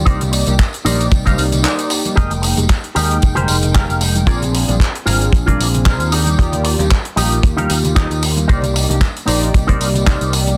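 An up-front, tight, dark kick anchors this sleek, cosmic nu-disco excerpt alongside a damped 70s drum kit with handclaps, hi-hat and tambourine, very quiet hard-hand congas, a growly picked electric bass, a clean, envelope-filtered electric guitar riff with analog chorus and slapback echo, and round, detuned synth brass carrying chorus, sidechain pumping and slapback echo, set in a small room under a dense, heavily limited master.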